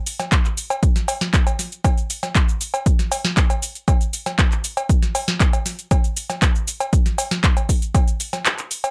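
Driving and trippy, this straight 4/4 house fragment at 118 BPM sets a punchy, overdriven analog kick up front against a booming analog drum machine whose cabasa, cowbell, handclaps, metallic hi-hats and tonal snare carry a tape-warm character and a short small-room ambience on the snare, clap and hats, all in a fairly dry mix, with the kick entering at 0.3 seconds and dropping out at 8.1 seconds while the drum machine runs on to 8.9 seconds.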